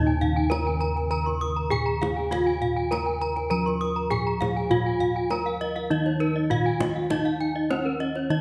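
A bronze metallophone carries the melody from the first moment, its horn-mallet strikes bright and ringing with the shimmering beats of paired tuning, while two more metallophones spin arpeggios above it: one close-miked, dry and full, the other vintage and band-limited. Dark, round bossed gongs hold the bass with a smooth, beating tone up front, and a kendang played with hard hands adds tight, small-room percussion. This short, ceremonial passage of Balinese gamelan, lifted from a longer piece, sits in the wet reverb of a recital hall.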